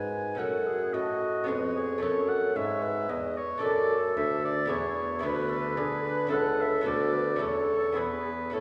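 Oboe, baroque flute, lute and bassoon all sound together from the opening moment of this 8.6-second cut from a longer baroque-style sonata movement, a radiant, dance-like piece in 3/4 at 111 BPM with a supple, rubato feel. The clear oboe carries the melody up front in a classical solo style, while the airy baroque flute traces a second line beneath it with vibrato and a crisp, wooden attack. The bassoon anchors the bass with a warm tone and light vibrato, also placed up front as a solo voice. The lute fills in the continuo accompaniment with delicate fingerpicking on doubled gut strings, some of them octave-doubled. The harmony moves from F# minor through C#7/E#, D/F# and E, settling through A/C# and Bm7/D before closing on E. A wet concert-hall reverb with a 2.4-second decay and a hint of small-room ambience places the ensemble toward the back of the space.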